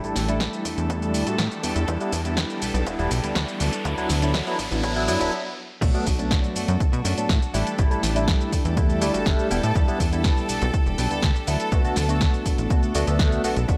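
Filtered disco house at 122 BPM in straight 4/4, this funky, groovy excerpt is cut from a longer piece and moves through A7sus4, Em7 and D6, with Bm7 opening the second pass. A tine electric piano carries the accompaniment with a phaser, vintage 12-bit sampler grit and a sound like it is coming through built-in speakers. Above it, a close, biting studio violin section holds sustained chords with light vibrato, while a bright, picked clean guitar recorded direct plays a compressed riff in the background. A plucky analog bass with a sawtooth and square-wave filter pluck sits up front, and piano, violins, guitar and bass share sidechain pumping and a low-pass filter. A layered house kit with a punchy snare, shaker, crash and bright, pumping hats is joined at 0.4 s by an up-front electronic kick, high-pass filtered, as a background riser builds before a stop at 5.3 s and the drop at 5.8 s. 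Light reverb and digital ambience frame the mix.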